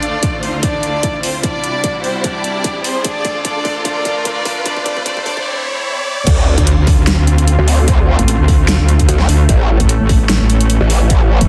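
An intimate violin section carries the melody from the start, its soft-attack, lightly vibrato bowing up front and trailed by a digital delay. Beneath it, a lush studio string section holds sustained chords through a low-pass filter with sidechain pumping. A dubstep drum kit plays a fill through the first 5.5 seconds of the build-up, with a huge snare, bright hats and crash cymbal in studio reverb, while a distorted electronic kick sits underneath and an electronic riser climbs in the background. This menacing heavy wobble dubstep excerpt runs at 149 BPM in a half-time 4/4 with a light swing on the 16ths, moving through Dm, C, Dm, F and Am in D minor. The violins drop away by 5.4 seconds, and at 6.3 seconds the drop hits with a saturated, formant-filtered growl bass, joined at 6.6 seconds by a metallic FM wobble bass, both chorused, overdriven and loud over Dm7 and then A. The dense, heavily limited master keeps the aggressive low end and tape-tinged drums tightly packed in a light reverb.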